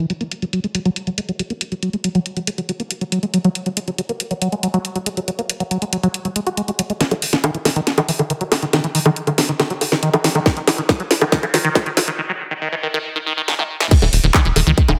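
Set in a moderate digital room reverb, this alien, hypnotic psychedelic trance excerpt opens on a squelchy, resonant liquid acid bass riff with phaser, sidechain pumping and delay over a garage drum kit with a cracking snare, bongos, handclaps, hi-hat, toms and crash cymbal, building from 7.0 seconds with drum fills and a filter sweep, adding a tight electronic kick at 10.5 seconds, pausing for a break, then dropping at 13.9 seconds as a punchy, tube-saturated sequencer bass drives in.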